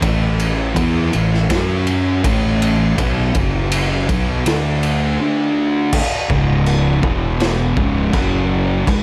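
A thick, double-tracked fuzz guitar leads this brooding, ominous stoner and doom metal excerpt, its dark, distorted riff picked out in power chords that move from A5 to F#5, B5 and D5 before the key settles into C# minor at 5.9 s. At a straight 82 BPM in 4/4, the riff shifts there to a second section built on C#5, E5 and F#5. Beneath it, a fingered electric bass with overdrive adds a round, fuzzy low end. A raw garage drum kit sits up front with a boomy kick, a medium-tuned snare, ride and crash cymbals, its saturated, gritty sound captured in a small room with a rolled-off top. Light reverb gives the whole piece a touch of space, and all three parts play throughout this cut from a longer piece.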